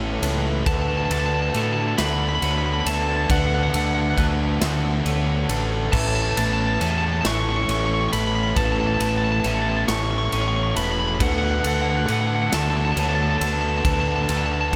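A growling fingered electric bass sits up front in this hopeful, cinematic post-rock excerpt, its overdriven tone anchoring a slow, straight 6/8 pulse at 46 BPM in dotted quarters. In the background, a warm, sludgy overdriven guitar and a bright, thick fuzz guitar play a heavy riff, and a big rock drum kit comes in at 0.2 seconds with a punchy kick, medium-tuned snare and bright crash and ride cymbals in a big acoustic room. From 0.7 seconds a lightly driven lead guitar carries the melody high above, twangy, compressed and slightly broken-up, with a slapback echo. Beneath it, a very quiet, clean twelve-string electric guitar picks arpeggios, while a close-miked, dry vibraphone with medium hard mallets and motor off adds metallic, ringing arpeggios with its own slapback echo. The harmony moves between Aadd9 and D6, and the whole mix sits in light reverb and studio ambience.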